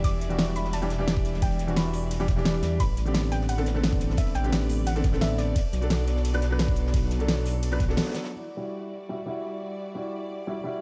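A dark, lightly reverberant production wraps this cut from a longer liquid drum and bass track in a lush, melancholic haze. A knocking electronic kick and a layered pop kit with a fat snare, crisp hats and ride drive the drop, while a gritty, saturated breakbeat kit sits in the background with its top rolled off. Up front, a detuned sawtooth bass rumbles deep and beating under tube saturation, and a felt-muted upright piano plays mellow, intimate accompaniment through a low-pass filter and dub echo, its action noise audible. A soft, round pluck carries the melody with chorus and dub echo, and a bowed string section holds smooth, vibrato-tinged chords in the background. After a band accent and brief break at 8.0 seconds, only the piano and strings continue from 8.3 seconds, the piano now under a filter sweep until the close at 10.8 seconds.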